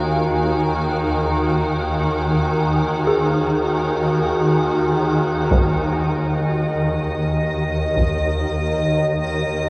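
In a slow, straight 4/4, this desolate dark ambient drone fragment sets a tense, swarming granular drone up front beside a blurred, cloudy granular pad that drops out at 5.5 s and an icy, crystalline glass pad with chorus, while an eerie, inharmonic synth bell with chorus and delay traces quiet arpeggios in the background from 3.1 s, and at 5.5 s a filter sweep moves across the drone as a distant, band-limited taiko ensemble, low-pass filtered, thuds with heavy sticks until 8.2 s, all under a huge, wet reverb and a worn, warbling cassette-tape pitch drift.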